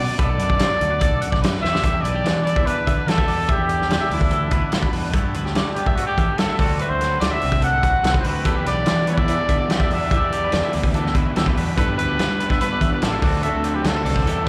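A warm trumpet with light vibrato and scooped notes leads from the first moment of this wistful, intricate math rock and midwest emo piece in E minor at 145 BPM, bathed in plate reverb, slapback echo and analog delay over two clean, twangy picked electric guitars (one comping, one spinning bright arpeggios) and a growly fuzz bass. A loose indie drum kit with a punchy kick and rolled-off top comes in at 0.2 s and plays a fill at 1.6 s before the chords settle into a cycle of Em7, G69 and D7. At 8.5 s a double-tracked, crunchy overdriven guitar riff joins in the background, all captured as a live gig heard through the venue's PA with the light reverb of a recital hall.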